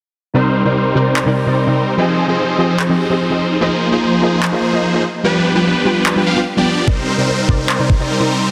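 Huge, lush supersaw chords lead this bittersweet, emotional future bass excerpt, their detuned sawtooth unison sounding bright and up front through a phaser, sidechain pumping, a sweeping low-pass filter and digital delay. Beneath them, a soft, round pluck blends triangle, sine and sawtooth tones with a noise layer, its dark, decaying notes shaded by ensemble chorus, its own filter sweep, sidechain pumping and digital delay. Electronic handclaps mark the half-time feel from 1.2 seconds. A knocking electronic kick arrives up front only at 6.9 seconds, just as the harmony returns to Cm7 after moving through Fm7, Bb9sus4 and G7. A long ambient reverb and a dense, heavily limited modern master wrap the short passage in an enveloping sheen.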